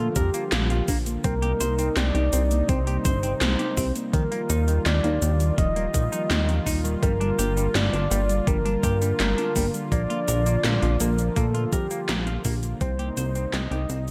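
A cinematic, nostalgic synthwave passage at 83 BPM in a straight 4/4, cut from a longer piece, opens with a dark, round synth lead layered an octave deep, carrying the melody with chorus, vibrato and delay. Beneath it a mellow, detuned analog pad holds sustained chords, pumping gently against the beat, while a soft triangle-toned pluck spins arpeggios through analog chorus, tape coloring and digital delay. A bright, clean semi-hollow electric guitar picks a compressed riff with subtle chorus, a touch of 12-bit sampler grit and delay, and an up-front, glossy pulse-wave bass anchors the low end with its own sidechain pumping. From 0.2 seconds, overdriven 80s electronic drums join: a gated snare, metallic hi-hats, handclaps and cabasa in a large-room sound, plus a thumpy, sampler-style kick that drops out at 13.0 seconds. The harmony moves from Bb through Cm7, Ebadd9 and Gm7 and back toward Cm7 under light digital ambience, and the music fades out from 10.9 seconds to the end.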